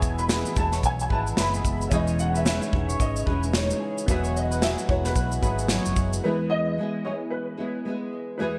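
Bright 1980s-style digital production and a moderate plate reverb frame this short, carefree acoustic pop excerpt in E major, moving at an easy-going 111 BPM in 4/4 with a light swing on the sixteenths. A dark, woody upright piano carries the melody with a short sustain, colored by ensemble chorus and digital delay, while an up-front, fingerpicked nylon-string guitar, double-tracked with a deep classical tone, supports it. Beneath them, a reedy, breathing pedal harmonium holds sustained chords, a very quiet concert grand piano adds clear, polished accompaniment, and a foam-muted vintage electric bass gives a round, punchy low end. A natural country drum kit sits up front with a tight kick, medium-tuned snare and shaker, its airy studio sound shaped by gated reverb, and a twangy, slightly broken-up electric guitar plays picked arpeggios drenched in lush chorus in the background. The harmony moves gently from E through C#madd9/E and Eadd9 back to E. 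Around 6.2 seconds the drums, bass, harmonium, electric guitar and concert grand piano drop out, leaving the upright piano and nylon-string guitar to carry the phrase until 8.6 seconds.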